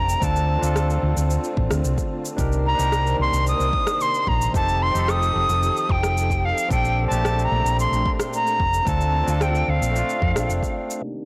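Sunset chillout in a smooth, wistful mood at 111 BPM, this short cut from a longer piece sets an airy, reedy jazz flute with vibrato and delay up front over a barky tine electric piano with vintage 12-bit sampler grit, a silky string machine in the background, a round, dark hollow-body fingered bass with tube saturation, and an overdriven deep electronic kick with cabasa and rim click, all moving through Dm7, Cm9, F9 and Bbmaj13 in a blown-out, overdriven recording with light reverb.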